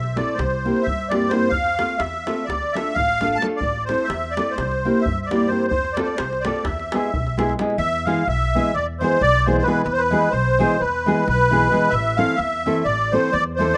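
Balkan folk in a wedding-band style, this fiery, virtuosic passage cut from a longer piece drives along at 260 BPM in eighths in 9/8, in E phrygian dominant, with a shimmering, reedy musette accordion carrying the melody up front through plate reverb and tape echo while a dark, fingerpicked nylon-string guitar with audible finger squeak accompanies close by, also bathed in plate reverb. Beneath them a woody pizzicato upright bass with steel strings holds the low end, and a tight, saturated, compressed davul plays until about 7.7 seconds, dropping out as the second section begins near 7.8 seconds. The chords move through C7, F, Dm and Am, return to C7 and F, reach E, and later settle on Am, all in a small room with a rough home-demo mix.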